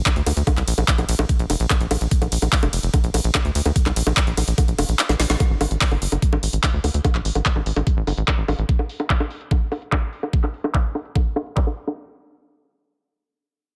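Hypnotic and psychedelic, this psychedelic trance cut drives along at 146 BPM in a straight 4/4, with an overdriven, knocking electronic kick and a layered, filtered kit of bongos, handclaps, bright hats, ride cymbal and a woody snare, all sitting up front in a digital space. A tight, punchy sequencer bass of sawtooth and square tones plucks darkly between F1 and D2 with fast-attack, decaying notes until 8.6 seconds. Around 5.0 seconds the kick drops out for a drum fill and a band accent, then from 5.4 seconds a filter sweeps across the drums as the groove rolls on.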